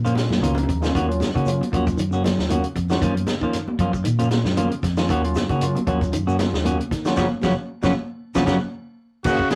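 A lightly swung 116 BPM afrobeat groove in 4/4 drives this intense rough rehearsal-room fragment, with a tight, dark-cymballed soul kit, round amped fingered bass, up-front hollow-body guitar stabs, background clean picked arpeggios, a barky electric piano overdriven through a combo amp, ringing high-tuned congas and grainy shekere cycling Gbmaj7 and Ebm7 through a band accent from 7.2 seconds, before a raspy, up-front trumpet growls in at 9.2 seconds and a gritty tenor saxophone follows at 9.3 seconds.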